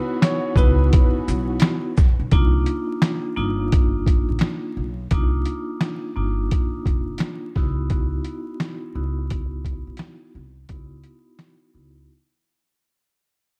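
Boom-bap hip hop at 86 BPM in 4/4 with a swung sixteenth-note feel, this gritty, moody excerpt from a longer piece sits in a dark production with studio reverb and vinyl crackle. A woody upright piano with long sustain and tape echo plays a brief melody at the opening, ending by 1.1 seconds, while a lush bowed string section with vibrato hovers in the background on sustained chords until 2.3 seconds. A vibraphone struck with hard mallets carries the accompaniment with a metallic, ringing tone, fast motor vibrato and cassette-tape coloring, and a filter sweep runs over it as the track fades out. Up front, a sampler-style drum kit brings a thumpy kick, medium-tuned snare, hi-hat and shaker, pitched down, compressed and overdriven with 12-bit grit, beside an acoustic pizzicato upright bass with steel strings. The harmony moves from Dbm11 to a rootless Cm11 and back, and a break closes the clip from 12.1 seconds.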